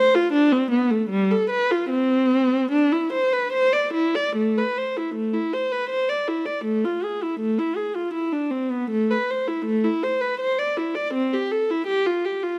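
Classical baroque-style suite movement for unaccompanied viola, this serene, dance-like excerpt in three with a flexible rubato finds a single dark, bowed viola up front, played with vibrato, soft attacks, expressive portamento and close, detailed presence in light reverb, shifting to a minor key at 4.4 seconds.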